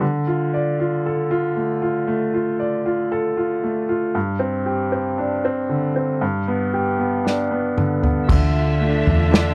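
Pop ballad, tender and heartfelt, cut from a longer piece and captured in a dry, close 1970s-style studio sound. A bright, woody upright piano with long sustain carries the accompaniment up front from the start, moving from Dm through Gsus4 to G, until an acoustic drum kit played with bundle sticks enters with a fill at 7.3 seconds. At 8.3 seconds, as the harmony settles on Dmadd9, a round, foam-muted vintage electric bass and a distant, lush bowed string section join, the strings holding sustained chords with vibrato.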